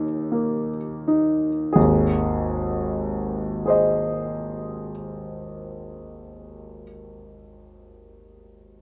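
In a very slow 4/4 at 32 BPM, the pulse breathes with rubato and slows over the opening 1.8 seconds. This brief passage, cut from a longer piece, is a romantic nocturne for solo piano in A-flat major, with a serene and tender mood. A concert grand carries everything alone, reaching from a deep bass in the low register up to the middle of the treble, its tone clear and natural and placed up front. The harmony rests on an Eb7 chord at the start and settles onto Ab at 1.8 seconds, where a new section begins and continues until 8.8 seconds. A moderate studio reverb gives the instrument a gentle sense of space around its sound.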